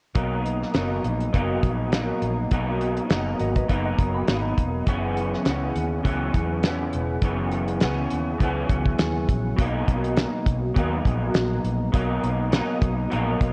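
Indie pop with a bedroom pop haze, this short excerpt moves at 102 BPM in 4/4 with a light 16th-note swing, settled in B major and tuned slightly sharp at A4 = 441 Hz, carrying a hazy, nostalgic mood. An electric guitar through a small old amp sits up front with a slightly broken-up, fingered tone, its ensemble chorus and warbly pitch drift giving the chords a woozy shimmer. Underneath, a vintage foam-muted fingered bass adds a dark, round low end, while a damped 70s drum kit plays hi-hat, kick and snare with a fat snare, tight kick and rolled-off top, dry and close. Briefly, from 3.4 to 4.8 seconds, a soft FM synth bell drifts in the background, its pure, mellow notes decaying through phaser, subtle chorus and analog delay. The harmony moves from Bmaj7 to F#7sus4 and returns to Bmaj7 as a new section begins at 9.6 seconds, all wrapped in light small-room reverb and the worn, warbling character of old cassette tape.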